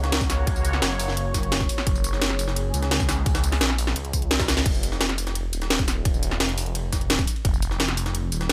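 Dark and tense, this short cut of technical drum and bass runs at 172 BPM in a straight 4/4, opening on a Gb chord as a bright, resonant sawtooth pad with chorus and sidechain pumping holds sustained chords until 4.6 seconds, over a swirling, thick phased saw bass, tube-saturated and pumping, that sits up front through the whole 8.5 seconds. Driving the groove are an overdriven, up-front drum and bass kit with a cracking snare, bright hats, crash and tambourine, a punchy, layered electronic kick recorded in a small room from 0.2 to 7.5 seconds, and a gritty, pitched-up jungle sampler-style kit with high-pass filtering, tucked in the background. A drum fill at 4.4 seconds leads into the second drop, where the harmony falls away to drums and bass in a dry, close mix.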